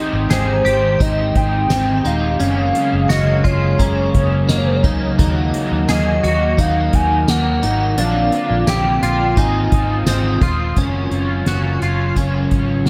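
Ethereal and blissful, this dream pop excerpt moves at 86 BPM in a straight 4/4, drifting through lush chords from Abmaj7 through Gbadd9, Ebm and Bbadd9 before settling on Gbmaj7 at 10.8 seconds. A lo-fi, wave-folded pad holds sustained chords with a slow attack and long release, steeped in chorus and its own reverb, while a bright, twangy clean electric guitar picks arpeggios through ensemble chorus and digital delay. A raw garage guitar adds overdriven, picked accompaniment colored by harmonic tremolo and analog chorus, and a dark, foam-muted fingered bass gives a round, punchy low end. From 0.3 seconds a soft-mallet drum kit with a fat snare, boomy kick, hi-hat and tambourine carries the beat. Above it a detuned, nostalgic synth lead sings the melody with vibrato, chorus and delay until 10.4 seconds, joined until 5.9 seconds by a delicate, bell-like celesta tucked in the background. 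The whole mix sits in a small room with light reverb.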